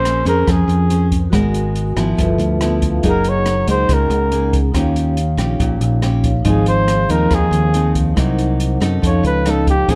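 Over a straight 4/4 bossa nova groove from a dark, small-room jazz kit of hi-hat, boomy kick and rim click, a round, up-front fingered electric bass and a fingerpicked classical nylon-string guitar with audible finger squeak, a soft-attacked flugelhorn with light vibrato carries a wistful, intimate solo melody, while a metallic, ringing vibraphone with slow motor vibrato adds a brief fill at 2.4 seconds, all in a dark production with light reverb.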